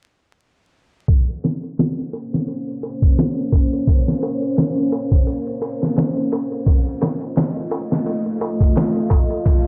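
A sampler-style trip hop drum kit leads this smoky, hypnotic passage cut from a longer piece: its compressed, pitched-down hits pair a thumpy kick and a medium-tuned snare with hi-hat and ride cymbal, sitting up front with the sound of having been re-recorded in a large room. The groove is in 4/4 with a loose swing, and a crisp metal-shell darbuka enters alongside the kit at 1.1 seconds, sitting lower in the mix with a small-room acoustic character. At 2.0 seconds a deep, moody ambient pad fades in, its detuned sawtooth and sine layers, triangle tone and sub octave thickened by chorus and its own reverb. The pad holds sustained chords, moving from Bbmadd9 to F7 at 6.7 seconds. The overall sound is dry and gritty, with vinyl crackle and a low-pass filter sweep running through the whole passage.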